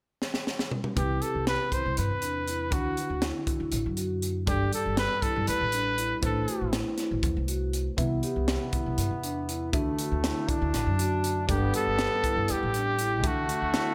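A lush hall reverb gives this bright, intricate slice of progressive instrumental band music a big arena sound: a crisp fusion drum kit with a high-tuned snare and punchy kick opens with a fill at 0.2 seconds, then a woody pizzicato upright bass, a bell-like tine electric piano in the background, mellow soft-mallet vibraphone arpeggios with slapback echo and delay, and an up-front jazz trumpet with vibrato and slapback echo join at 1.0 seconds, moving in a straight 7/8 at 240 BPM in G major over Cmaj7, Dadd9, Gsus2 and Amadd9 harmonies, before a distant, roomy classical-style trombone adds a second line from 8.0 seconds.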